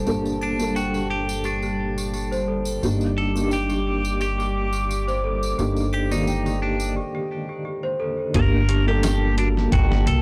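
A woody, growly upright bass sits up front in this melancholic, hypnotic trip hop excerpt, its pizzicato lines thickened by transformer saturation and moving in G minor at 87 BPM with a light 16th-note swing. Around it, a felt-muted upright piano with audible action noise plays soft, intimate accompaniment through a tremolo, while a detuned sawtooth pad with a sub octave holds slow-attack chords shaded by chorus and phaser. A large celesta adds bell-like, airy arpeggios roughened by 12-bit sampler grit, a low-pass filter and tape echo, and a clean, twangy electric guitar carries the melody from 0.4 s, also trailing tape echo. A ringing tambourine and triangle sit quietly in the background, and after a break from 7.0 s a dusty, compressed sampler-style drum kit with a thumpy kick and medium-tuned snare arrives at 8.3 s. The harmony shifts between Gmadd9 and Ebmaj7/G, all set in a small room on a dry, gritty hardware recording.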